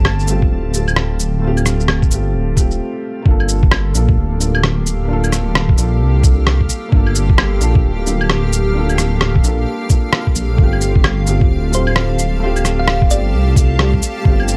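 A soft, felt-muted upright piano with audible action noise, a cloudy granular pad and a deep, rumbling detuned saw bass open this melancholic, nocturnal future garage piece at 131 BPM in G minor, joined from the start by tape-warm rim click, claves, shaker and cabasa on a swung groove. All three pump together with a sampler-style kick that enters at 0.4 seconds. After a brief stop at 2.8 seconds, the music moves from Fadd9 to Gm7, with dub echo trailing the piano and the bass sitting up front with tube saturation. The chords return to Fadd9 at 10.6 seconds, and at 11.7 seconds a round, tine-like FM pluck with chorus, phaser and delay adds a short melody in the background.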